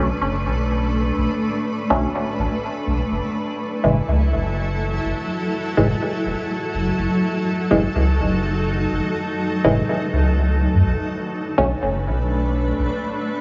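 Deep and meditative, this dub techno excerpt moves at 124 BPM in 4/4 with a light swing on the sixteenths, tuned slightly low to A4 = 437 Hz. A granular cloud pad holds sustained chords throughout, its detuned unison blend of sine and sawtooth tones slow to bloom and long to fade, sounding blurred and evolving yet bright and up front inside its own reverb. Beneath it, a filtered dub chord stab gives muted, decaying sawtooth plucks coloured by chorus, phaser and dub echo, dropping away at 11.7 seconds. A round, sine-based sub bass sits warm and mellow near the front, sustaining low notes until 12.9 seconds. The harmony rests on Bm7, moves to F#m7 for most of the passage, then returns to Bm7. The whole recording is bathed in a huge ambient reverb with a long tail and a layer of vinyl crackle.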